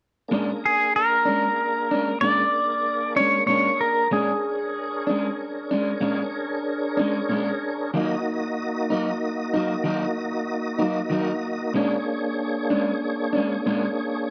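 A slow 12/8 pulse at 63 beats per minute, counted in dotted quarters with a straight feel, carries this soulful, mournful blues fragment, cut from a longer piece. The harmony rests on a Bb7#9 chord, moves to Eb minor and returns to Bb7#9. Entering at 0.3 seconds, a picked electric guitar through a small old amp plays warm, slightly broken-up, compressed accompaniment, pulsing with harmonic tremolo. Alongside it, a warm, full, lightly overdriven tonewheel organ holds sustained chords through a slow rotary speaker and chorus vibrato. From 0.7 to 5.4 seconds, a bright, twangy lap steel sings the melody up front with fingered slide and volume swells, clean and compressed. A moderate plate reverb lends the whole fragment a lingering, spacious glow.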